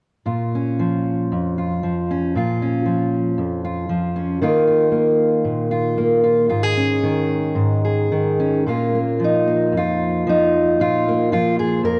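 Loosely rubato around 114 BPM in 4/4, this intimate, reflective folk excerpt features a solo fingerpicked steel-string dreadnought guitar in Bb minor, its full-bodied tone sitting up front. The chords move from Bbm through Ebsus2 and Absus4 before returning to Bbm at 8.7 seconds, as the piece shifts into a new section. A moderate concert hall reverb surrounds the playing, and the worn cassette tape adds a warbly pitch drift.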